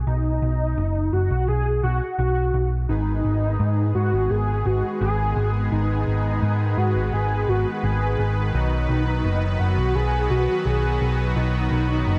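This 12.2-second cut from a longer synthwave piece moves at a straight, unhurried 85 BPM in 4/4, setting a nocturnal, nostalgic mood in G# minor. A hollow-body, short-scale picked electric bass opens at 0.0 seconds, sitting up front with a dark, round, amped tone roughened by tube saturation. Almost at once a unison lead joins with the melody, a thick, bold sawtooth-and-triangle voice with wave-folding, ring modulation and vibrato, yet mellow overall, spread by ensemble chorus and delay. At 2.9 seconds a soft supersaw arrives with sustained chords, smooth, detuned and evolving under a subtle chorus. The harmony moves from B to G#m and back to B at 8.5 seconds, all framed by light digital reverb in a bright 1980s-style production.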